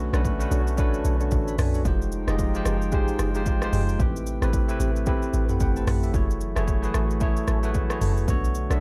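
A dark, warm digital ambience frames this hypnotic, deep amapiano passage at 112 BPM, cut from a longer piece, where a round, percussive log drum bass and a punchy deep house kit of kick, smooth hats, rim click, shaker and toms sit up front with a swung sixteenth feel. A bell-like, clean tine electric piano carries the minor ninth chords and adds a brief fill at 5.3 seconds, while a hollow, flute-like pad with chorus hovers in the background. A lightly overdriven tonewheel organ with slow rotary speaker, chorus vibrato and delay places mellow stabs behind them, and a barely audible downlifter runs through the first 1.9 seconds.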